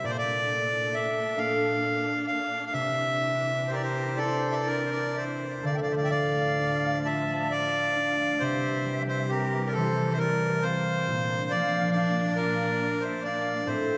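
A reedy, up-front accordion carries a haunting, mournful Celtic slow air in a rubato 6/8 over ringing thumb-plucked harp and a softer bed of rich, vibrato-laden bowed strings, while an airy, distant flute with a crisp chiff enters at 3.7 s to trace an expressive second line, the whole passage, cut from a longer piece, set in the long wet reverb of a church.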